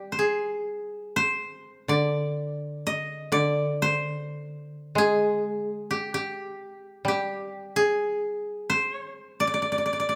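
Close, detailed microphones in a moderate recital hall set two fingerpicked koto up front in this brief excerpt of Japanese chamber music. One koto carries a bright, dry melody over the other's warm, woody accompaniment lower down, both sounding from the opening until about 10 seconds in. The free, rubato pacing gives the traditional piece an austere, calm mood.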